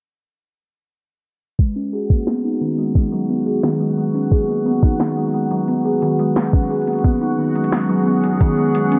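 A woody, fingertip-plucked kalimba leads this melancholic, eerie IDM excerpt at 88 BPM, ringing out arpeggios from D#3 to G#4 up front in the mix, softened by a low-pass filter, a filter sweep and tape echo. Beneath it, an overdriven but soft electronic kick drum sits prominently, while an analog electro drum machine adds a punchy snare and metallic hi-hats in a straight 4/4 feel. From 1.9 seconds, a quiet, bubbling texture built from a resonant sawtooth with random filter steps drifts in the background, thickened by chorus and reverb. At 7.6 seconds, a warbling, nostalgic pad of detuned square and triangle tones with a sub octave enters with sustained chords, pumping with sidechain compression and coloured by its own chorus and reverb. The harmony rests on a rootless D#madd11, and the piece is cut from a longer work, heard through light reverb and an overall low-pass filter that give it a dim haze.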